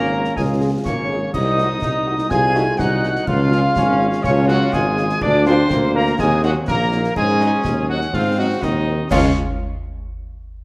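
A military-style march for wind band in a straight 2/4, spirited and rousing, this brief passage is cut from a longer piece. A mellow, distant cornet carries the melody with vibrato, while a pure, tongued piccolo with rolled-off highs and a vintage-toned euphonium sitting in the background each trace a second line. Underneath, a tight trombone section holds smooth, soft-attacked chords with light vibrato, and a very quiet French horn section adds warm accompaniment from 0.1 seconds. The tuba is the most prominent voice, up front and roomy, anchoring the bass with a soft attack and vibrato. Concert snare, bass drum and clash cymbals with dark cymbal tone join at 0.2 seconds, and a wet, large studio reverb gives the band a generous sheen as the harmony moves through a diminished chord and a suspended dominant before settling home.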